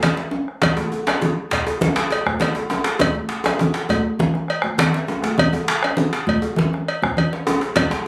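A straight 4/4 pulse at 101 BPM drives this short cut of West African traditional drumming, a driving, powerful ensemble groove that stays in a single section. High-tuned congas ring out under soft hands with a small-room sound, while a metallic cowbell sits close and up front. One djembe is deep and warm, compressed and saturated, and a second djembe joins at 0.2 s with a tight, cracking tone, metal rattles, hard hands and a live-room presence placed at the front of the mix. A round, close-miked bombo enters at 0.5 s, and a drum fill breaks in at 4.9 s. The whole was captured on a phone in the room, then given a wet studio reverb and compression.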